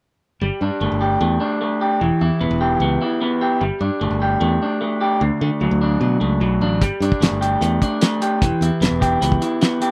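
Wistful and jangly, this indie rock excerpt moves at 150 BPM in G lydian, with a twangy, slightly broken-up electric guitar riff played through a small old amp and a bright, growly fingered electric bass both entering at 0.4 seconds over a Gsus2, Em and D progression. A cloth-damped drum kit joins at 6.8 seconds with a fat snare, tight kick and hi-hat, its dark, rolled-off top sitting up front beside the guitar. The sound is dry, recorded outdoors with little reverb.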